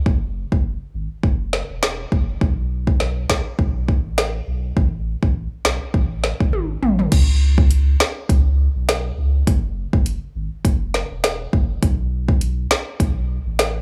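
This is a sultry, hypnotic dancehall groove at 102 BPM in 4/4, with a light 16th-note swing, cut from a longer piece. A round, sine-like sub bass and an electronic drum kit start together at 0.1 seconds. The bass sits up front, deep and mellow, its notes speaking with a fast attack and then sustaining, low between E1 and C#2. The layered kit pairs a deep kick with a woody snare, hi-hat, toms and crash cymbal, all carrying a tape-warm, produced character and sitting close in the mix. A drum fill at 6.5 seconds leads into the second section at 7.1 seconds. The sound is dry, with little reverb and a studio ambience, keeping the two parts intimate and direct.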